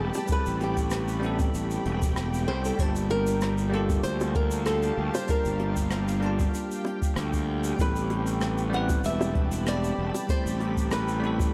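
A dark, softly reverberant small-room sound frames this wistful, smooth sunset chillout excerpt at 96 BPM with a gentle sixteenth-note swing, moving from Am9 to Gm9 and back. A bright, fingerpicked flamenco guitar carries the melody through digital delay, with audible finger squeak, over a bell-like tine electric piano in the background through tape echo and a shimmering, ethereal, detuned pad with octave-up shimmer and chorus. Up front, a growly fuzz fingered electric bass with overdrive and tube saturation sits on a deep analog electronic kick entering at 0.3 s, while a brushed jazz kit with hi-hat, rim click and shaker and tight, high-tuned bongos played with soft hands fill in behind from 0.1 s.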